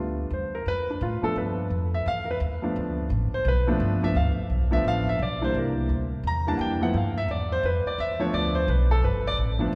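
A wet church reverb with a 2.9-second decay surrounds this jazz piano trio excerpt, giving it the spaciousness of a church or concert hall. At 172 BPM in 4/4 with a swung eighth-note feel, the music is sophisticated and swinging, set in G mixolydian. A concert grand piano, warm and natural in tone with a deep low end and placed up front, carries the melody between E3 and Bb5 as a solo across the full 9.8 seconds. Beneath it, a pizzicato upright bass with steel strings and a woody, dark timbre holds the low register from G1 to A2, also up front. The harmony rests on G7, moves to C7 at 5.5 seconds, and returns to G7 at 6.9 seconds, a short slice cut from a longer piece.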